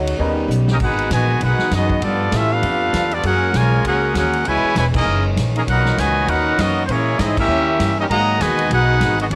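A brisk swung 4/4 drives this brassy big band swing excerpt, where a punchy-kicked drum kit plays a fill from 0.5 seconds into the clear, up-front trumpet section's melody at 0.7 seconds, as a close-miked trombone section carries a second line, a woody, thumpy pizzicato upright bass with transformer saturation anchors the low end, a bright saxophone section holds vibrato-tinged chords in the background, a natural grand piano accompanies only through 0.8 seconds, and light studio reverb frames band accents at 4.9 and 7.3 seconds.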